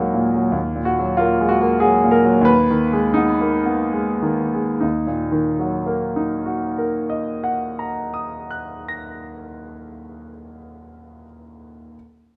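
A bright, brilliant concert grand piano plays alone, up front and present, spanning deep bass to high treble in this brooding, stormy romantic character piece in triple metre, its rubato phrasing slowing over the opening 4.8 seconds as Eb minor harmony shifts through Abm/Eb and back, all set in a moderate recital hall reverb within a short cut from a longer work.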